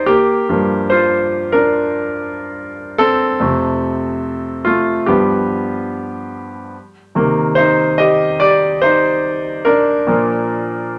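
A bright concert grand piano, up front with brilliant highs, deep bass and short sustain, plays alone throughout this heartbroken, melancholic pop fragment in a moderate studio reverb, its chords moving from Gm7 through F and G7 before settling into a new passage on Cm7 at 6.7 seconds and closing on Bb.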